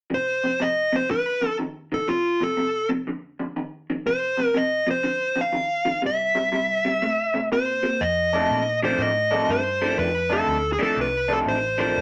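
A dark, smooth lead guitar with overdrive sings up front over a lo-fi, slightly broken-up riff from an electric guitar through a small old amp with phaser in this swaggering, laid-back electric blues shuffle, cut from a longer piece and heard in a moderate studio room, until a round, punchy, foam-muted vintage fingered bass joins at 8.0 s as the harmony shifts to F13.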